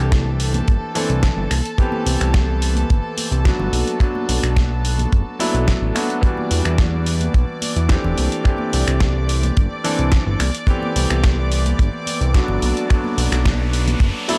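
A dry, gritty hardware recording with studio reverb frames this cosmic, sleek nu-disco excerpt at 108 BPM in straight 4/4, cycling through C6, Am7/C, Bm7 and Em7. An up-front, tight acoustic kick and a fat, detuned sawtooth analog bass with a filter sweep drive the groove, while a compressed, dusty sampler-style kit of finger snaps, hi-hat and medium-tuned snare sits beside congas tucked in the background. A clear concert grand piano with audible action noise and long sustain plays the accompaniment through sidechain pumping and tape echo, a distant, reedy chamber string section holds gut-string chords roughened by 12-bit sampler grit, and an electronic riser enters at 12.3 seconds and runs to the cut at 14.4 seconds.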